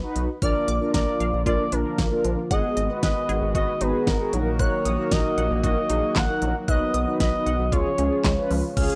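Nocturnal and melancholic, this synth-pop excerpt sets a smooth, gliding portamento lead with vibrato up front over mellow synth brass, a rubbery square bass, a shimmering chorused pulse-width pad, a squelchy resonant blip pluck arpeggiating with phaser and tape echo in the background, and a layered pop drum kit of knocking kick, fat snare, crisp hats, handclaps and crash, all in a dry, gritty recording with light reverb.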